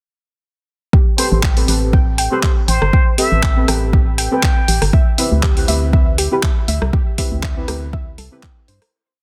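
A breathy plunger-muted trumpet plays a brief jazz-style solo from 1.2 to 4.8 seconds over a moody, late-night deep house groove, with an overdriven four-on-the-floor kick up front, programmed open hats, rim clicks and claps, a hollow organ-like FM bass riff, dark syncopated chord stabs treated with phaser, and a warbling lo-fi pluck arpeggio drifting in the background, all fading out from 6.3 seconds in a dense, dry, heavily limited mix.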